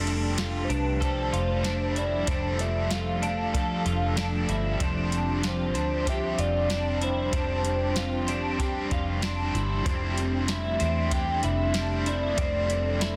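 This blissful, floating dream pop passage, cut from a longer piece, opens with a hollow, woody synth lead carrying the melody in F major over a swirling, detuned analog pad, while a bright twelve-string electric guitar picks compressed, twangy arpeggios through analog chorus and delay. Alongside them, a crunchy overdriven guitar adds accompaniment bathed in tremolo and lush chorus, and a vintage muted fingered electric bass sits up front with a round, dark, foam-muted tone. At 0.1 seconds a soft vintage rhythm box joins, with a deep kick, crisp snare and metallic hats roughened by overdrive, holding a straight 95 BPM pulse in 4/4. The harmony drifts from F69 to G7sus4/F at 4.8 seconds and on to Am11/F at 9.9 seconds, all over an F in the bass register. The lead's soft vibrato and the pad's nasal, evolving phaser shimmer float in a moderate hall reverb, and a dense, heavily limited modern master packs the whole mix tightly together.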